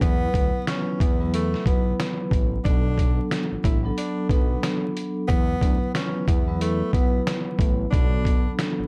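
A gritty, pitched-down sampler-style drum kit sits up front with a thumpy kick and medium-tuned snare, driving a dark, reflective boom-bap hip-hop groove at 91 BPM with a swung 16th feel, cut from a longer piece. A fat, detuned sawtooth bass anchors the low end while a mellow, ringing vibraphone with slow motor vibrato and a cassette-tape tint carries the accompaniment over chords moving between Esus2 and Bm7. A breathy tenor saxophone plays a subtoned jazz-style solo with scooped notes and slapback echo, all wrapped in a dusky production with light reverb and vinyl crackle.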